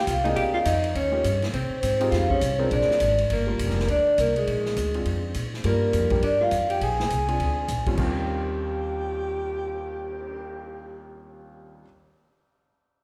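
A mellow soft-mallet vibraphone carries the melody over a clear, vibrato-laced alto saxophone second line from the start of this sophisticated, relaxed small-group swing and bop excerpt at 205 BPM in Eb mixolydian, joined at once by woody, thumpy pizzicato upright bass, an open drum kit with dark cymbals and a boomy kick that drops out at 10.3 seconds, and an intimate grand piano with audible action noise, all bathed in a lush hall reverb as the chords move from Bb7 through Gm7 to a closing Eb13.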